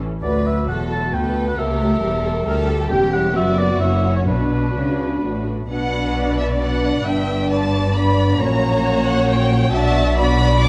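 Lush violas with portamento open this quick, spirited classical-period movement in B minor at 134 BPM in 3/4. From 0.2 s a smooth, distant violin section carries a graceful melody over a focused second violin line, with soft-attack French horns holding mellow chords in the background and intense cellos and close double basses anchoring the bass. A roomy solo oboe with light vibrato adds a second line until 5.4 s, while the rubato feel and the dark production with recital hall reverb give the orchestra an expressive glow.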